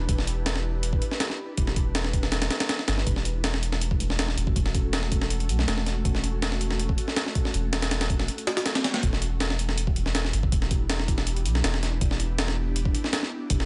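A straight, gritty breakbeat drum kit, pitched up and compressed with a thumpy kick, high-tuned snare and hi-hat, drives this dark, nostalgic drum and bass and jungle passage from 0.1 seconds, sitting up front beside a deep, round dub sub bass while an ethereal, airy pad with ensemble chorus, phaser and built-in reverb sustains mellow, detuned chords moving from Em7 to F#m/E and back.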